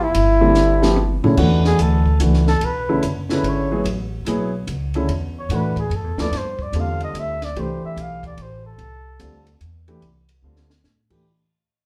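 Hypnotic and searching, this swung modal jazz waltz, cut from a longer piece, sets a veiled, breathy bucket-muted trumpet up front for a solo with light vibrato and scooped notes from 1.4 s until it stops at 9.6 s, over woody pizzicato upright bass, short-sustained grand piano chords and a dark, smooth cocktail drum kit with a high-tuned snare and punchy kick that plays fills early and near the close, all set back in a wet club reverb as the music gradually fades.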